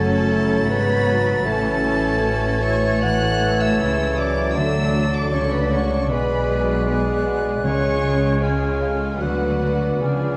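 A solemn, melancholic slow romantic movement for symphony orchestra opens with everything at once: a focused, vibrato-laden violin section carries the melody at 78 BPM in 4/4 with rubato, while a second violin line, an airy silver flute, a dark clarinet and a distant oboe add second lines. A mellow bassoon and lush viola section supply accompaniment, a ringing fingerpicked harp adds arpeggios, and cello and double bass sections hold the bass, with a very quiet, dry timpani sounding from 7.6 s over the C# chord. Dark production and recital hall reverb give this fragment of a longer piece a grave, spacious depth.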